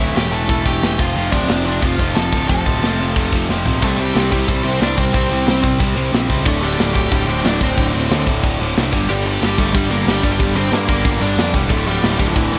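Driving along at 182 BPM in a straight 4/4, this angry, aggressive punk rock excerpt rides on a tight metal drum kit with a tight kick, medium-tuned snare, hi-hat, crash and toms, whose warm, rolled-off top sits mid-forward in a studio room and whose fill at 3.5 s launches the second section at 3.8 s. A bright, double-tracked distorted guitar riff sits up front over a growly, fuzz-soaked picked bass, while a lead guitar pushed through a small cranked amp carries the overdriven melody. Chords move from A5 and F to C5, D5 and Gm under light reverb.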